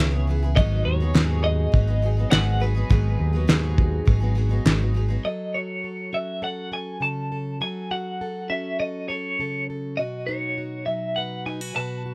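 A bright, twangy twelve-string electric guitar carries a tremolo-tinged melody over a shimmering, octave-doubled picked twelve-string acoustic and a dark, round electric bass as this bittersweet, yearning indie folk cut opens, with a muffled, gritty drum kit with a fat snare arriving at 0.6 seconds, crisp group handclaps joining briefly, and a full-bodied fingerpicked plugged-in steel-string acoustic guitar taking over the accompaniment at 5.2 seconds as the other backing parts fall away beneath the electric melody, all in a dry, close-up mix.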